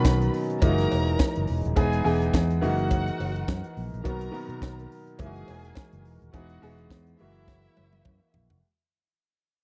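Disco at 105 BPM in 4/4 with a light sixteenth-note swing, this short cut from a longer piece feels glamorous and joyful, riding a loop of Bmaj7, F#13 and Emaj7 chords with a closing F#9. A tight funk drum kit sits up front with a high-tuned snare, tight kick, hi-hat and toms, its dry, airy, polished sound giving way to a drum fill from 7.5 seconds. A fingered electric bass, amped and punchy, pushes forward alongside a natural-sounding baby grand piano playing the accompaniment. A dark studio violin section carries a second line with expressive vibrato, portamento and a smooth top, while a fat, percussive tonewheel organ holds sustained chords in the background, lightly overdriven and coloured by lush chorus. A metallic cowbell adds a close, dry tone low in the mix, and the whole passage fades out across its 8.6 seconds in a small, dry room with a 1970s studio character.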